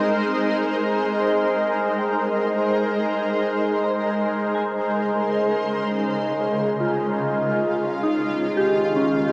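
Ambient piece at 64 BPM in Ab major, serene and peaceful, cut from a longer work: a bright, shimmering pad sits up front with sustained chords thickened by chorus, phaser and octave-up shimmer reverb, while a soft, pure FM synth bell plays mellow arpeggios in the background through diffuse delay, fading in from 0.3 s. A reedy, breathing pedal harmonium holds an Ab drone from 0.3 s beneath chords moving from Ab to Db6 and Eb7. The whole is bathed in a huge, wet reverb and a worn cassette-tape warble with drifting pitch.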